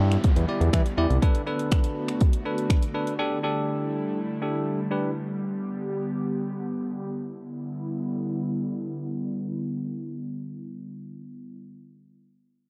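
A straight 4/4 house pulse at 122 BPM opens this confident, driving dance-pop excerpt in E minor, with a punchy kick, bright hi-hats and finger snaps from an overdriven, layered electronic drum kit placed up front. A fat, detuned sawtooth bass with a fast attack pumps with the sidechain but drops out almost at once, while a bell-like, clean tine electric piano and an airy, breathy pad with a slow attack, chorus and a warbling vintage character both pump with the sidechain and sit behind a low-pass filter. A filter sweep runs through the opening section as a faint downlifter slides underneath in the background. The drums and downlifter stop at 3.2 seconds and the electric piano at 5.1 seconds, leaving the soft pad to sustain alone until 11.6 seconds. The harmony moves through Em7, Bm7, A7sus4 and G before returning to Em7, all set in a dark production with light reverb.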